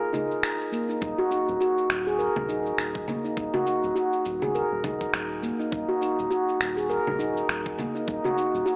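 A dry, gritty hardware recording with an AM-radio tint and light digital ambience carries this meditative, mystical organic downtempo excerpt, where a ringing stainless-steel handpan plays up-front arpeggios through tape echo from the start, electronic congas, shaker and finger snaps join at 0.1 seconds with a compressed, sampler-style feel, and at 1.0 seconds a deep, dark, detuned analog bass with tube saturation arrives alongside a thumpy electronic kick drum in a lightly swung groove.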